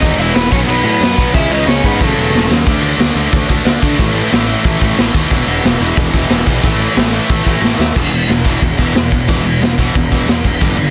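Driven by a gritty, up-front garage drum kit with a punchy kick and fills at 2.3 and 7.6 seconds, this rebellious, upbeat punk rock excerpt charges along at 182 BPM in E major, carried by a growly fuzz bass, two distorted rhythm guitars set back in the mix, a very quiet double-tracked garage guitar, and a bright overdriven lead melody that stops at 2.5 seconds, in a dry, dense, heavily limited master.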